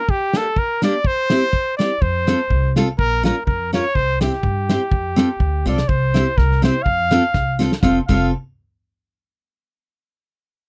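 A dry, close recording in a 1970s studio style carries this jolly, bouncy alpine dance-band piece, cut from a longer work and swinging in 2/4 at 124 BPM in F major. A clear, smooth-topped trumpet plays the solo melody up front in a classical style, over a bright picked steel-string acoustic guitar with audible finger squeak and a loose drum kit with dark cymbals, a punchy kick and a rolled-off top, which plays fills at 5.7 and 7.3 seconds. A woody pizzicato upright bass joins at 2.0 seconds as the harmony moves through F, B-flat minor and C.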